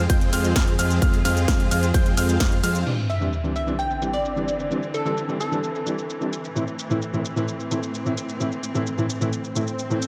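A punchy, up-front electronic kick and a big-room kit with filtered snare and cymbals drive the opening drop of this euphoric, triumphant festival progressive house excerpt at 130 BPM in C major, where huge detuned supersaw chords with cassette-tape colour, a fat saturated analog bass, and a warm grand piano arpeggio pump against rich bowed strings over Fm. A sub drop impact at 2.9 seconds then ushers in a dark, mellow baby grand and a glassy chorused wavetable pluck melody over Cadd9 and Am, all in a moderate concert hall reverb.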